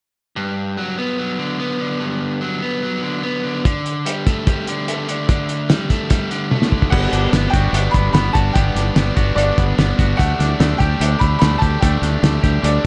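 Wistful yet upbeat, this indie rock excerpt moves in a straight 4/4, opening with a biting overdriven guitar riff that sits up front over chords shifting between Gmaj7 and Dsus4. At 3.7 seconds a cloth-damped drum kit thuds in with a fat snare, tight kick, muffled dark cymbals, hi-hat and toms, its sound gritty and saturated like a small lo-fi room. A drum fill at 6.5 seconds leads into a fuller passage at 6.9 seconds, where a growling fingered electric bass joins with punchy overdrive, underpinning the low end. At the same point a bright upright piano carries a brilliant, woody melody high above, while a clean, twangy electric guitar adds a second riff touched with subtle chorus. The production is dark and close, with little reverb and a rolled-off top end.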